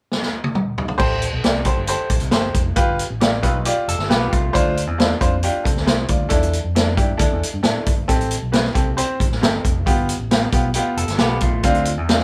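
A vintage drum kit drives this urgent, uptempo 1960s-style soul passage at 135 BPM in a straight 4/4, opening with a short fill before the band arrives at 1.0 seconds. The kit sits up front with a punchy kick, medium-tuned snare, hi-hat and dark crash cymbals, its rolled-off top giving it a rounded, mid-forward weight. A bright upright piano supplies woody, brilliant accompaniment, while a fingered electric bass adds an amped, punchy low end under a chord cycle that moves from G7 through Dm7, E7sus4 and Am7 before returning to G7 and Dm7. An electric guitar through a small old amp cuts in with a short, slightly broken-up riff at 3.9 and again at 11.0 seconds, its compressed, lo-fi tone sitting lower in the mix. The whole band plays live in one room with moderate studio ambience, and the excerpt is cut from a longer piece.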